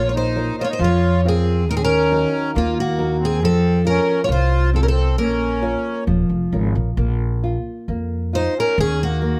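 Moving in a slow, rubato 2/4 at 68 BPM, this fado-style ballad in Bb minor carries a longing, mournful mood through a short passage cut from a longer piece. A picked twelve-string acoustic guitar takes the melody up front, its octave-doubled strings giving a shimmering, warm concert tone. Beneath it, a reedy accordion with slow beating holds a second line, while a dark, full-bodied nylon-string guitar fingerpicks the accompaniment with a deep classical character. The upright bass sits prominently, its pizzicato gut strings sounding woody and thumpy until 9.3 seconds. The harmony moves through Bbm, Ebm and F before returning to Bbm, then shifts to bare power chords on Bb and Eb from 7.0 seconds as a new section begins. Close, detailed microphones and a light reverb keep the small ensemble intimate and clear.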